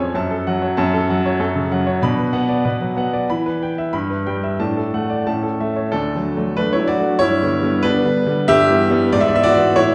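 In a flexible, rubato 2/4 at 94 BPM, this playful and elegant classical-period piano sonatina in D major moves through a brief opening phrase before a new section begins at 5.9 seconds. A solo baby grand covers D2 to B5 with a clear, intimate and natural tone, long sustain and audible action noise, sitting up front in the mix. A wet recital-hall reverb places the listener further back in the room, and the passage is taken from a longer piece.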